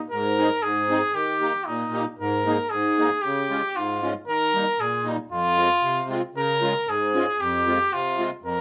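A reedy musette accordion and a clear trumpet enter together at 0.1 s in this bouncy, jolly alpine folk dance excerpt, set in Ab major at 115 BPM in a straight 2/4. The trumpet carries the melody in a classical style with vibrato, sounding distant and roomy, while the close-miked, dry accordion supplies a full, shimmering accompaniment. Both parts sit up front in a small room, moving through chords such as Absus2, Db and Fm before the cut at 8.6 s.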